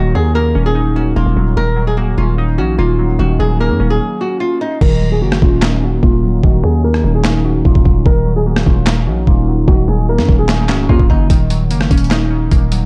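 Hip hop trap in Eb minor at 148 BPM with a half-time feel, eerie and hard-hitting: a dark, fingerpicked flamenco guitar melody with audible finger squeak, low-pass filtering and digital delay floats over glassy, chorused digital keys and a growling, buzzy 808-style bass until a brief stop at 4.0 seconds, after which a gritty, compressed boom bap sampler-style kit with a thumpy kick, high-tuned snare, handclaps, rim clicks and crash enters up front at 4.8 seconds while a filter sweep runs through the keys and the guitar drops out at 11.3 seconds.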